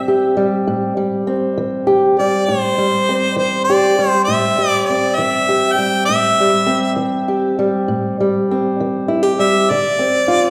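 A slow, straight 12/8 pulse at 67 BPM underpins this soulful, smoky acoustic country blues duo in A minor, cut from a longer piece and resting on Am7 before moving to Dm7 at 9.7 s. Up front, a clear, close-miked harmonica carries the melody in a jazz-inflected solo voice, with vibrato and scooped notes. Beside it, an old ladder-braced acoustic guitar is fingerpicked on dark, woody, boxy old strings, all bathed in the long, wet reverb of a church or concert hall.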